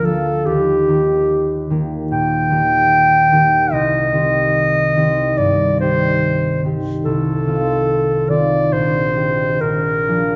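The rhythm moves with a free, rubato lilt over a slow 4/4 pulse of roughly 62-75 BPM, giving this romantic classical duo for clarinet and harp a warm, lyrical mood in Eb major. The clarinet carries the melody from G4 to G5, its tone warm and present with a soft attack, sitting up front in a solo, classical style. Beneath it, the concert harp supplies the accompaniment across a range from Bb1 to Ab4, its thumb-plucked acoustic notes ringing out close to the listener. The harmony moves from Eb through Cm, F7/C and Eb/Bb before reaching Bb7 at 9.6 seconds. Both instruments play throughout the 10.4 seconds of this passage, which is cut from a longer piece and set in a reverberant recital hall with a 1.5-second decay.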